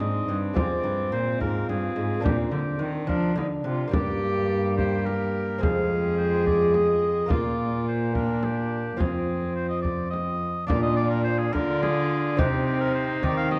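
A 6/8 pulse carries this solemn, courtly renaissance-style consort dance, a short passage cut from a longer piece that moves through chords such as Fm, Bb, Gm and Cm. A clear oboe sings the melody over a reedy, gut-strung viola on the second line, while a dark, punchy bassoon and a delicate fingerpicked lute with double strings, set in the background, fill out the accompaniment. A rich cello sits up front on the bass, a deep frame drum played with soft hands keeps time close and dry, and the ensemble blooms in the reverb of a recital hall.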